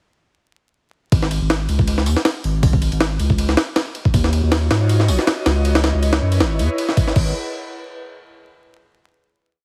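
This is a short, complete drum and bass piece with a jungle flavour, nostalgic yet frenetic in mood, built around a drop that opens at 1.1 seconds. A sampler-style jungle kit drives it with a heavily chopped, pitched-up breakbeat: a gritty, compressed sound with a thumpy kick, a medium-tuned snare, hi-hat, ride and crash, all sitting up front with a slight swing. Beneath it, a deep, saturated sub bass plays a dub-style line, thick and sustained with a fast attack, sharing the front of the mix with the drums. At 4.4 seconds an airy, breathy pad enters softly, detuned, ring-modulated and washed in chorus, holding mellow, full-bodied chords that drift from D#m9 to C#m9. The piece settles on a G#m9 final chord at 7.2 seconds. Light digital reverb and vinyl crackle colour the whole track, and heavy compression gives it a squeezed, radio-like sound.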